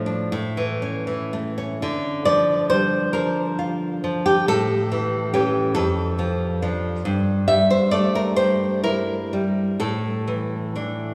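A long, wet church reverb surrounds this recording, with a small-room ambience beneath it and the guitar placed up front. It is a short, melancholic and passionate romantic piece for solo classical guitar in D minor, moving in a slow, rubato 6/8 at roughly 39-48 BPM in dotted quarters. The fingerpicked nylon-string guitar has a bright acoustic tone, and finger squeaks are audible as it ranges from F2 up to E5. An opening passage rests on A before the music turns to D minor at 1.8 seconds. From there the harmony moves through A, Dm/F and Edim/G, and settles on an Asus4 near 9.8 seconds as the fragment, cut from a longer piece, ends at 11.1 seconds.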